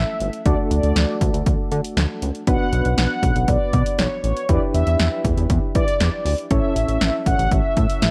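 Synth-pop in B minor at 119 BPM, this short, driving and melancholic excerpt cut from a longer piece moves through D, Bm, Em7 and A over a steady 4/4. A punchy analog drum machine with a tape-warm kick, snare and hi-hat enters at 0.2 seconds, sitting up front beside a glossy, retro chorused synth bass built from pulse and sawtooth tones with a filter pluck. Above them, soft, round electric-piano-like synth keys with chorus and tremolo accompany a dark, detuned synth-brass melody whose evolving filter sweep, vibrato, chorus and analog delay colour the line, all within light reverb and digital ambience.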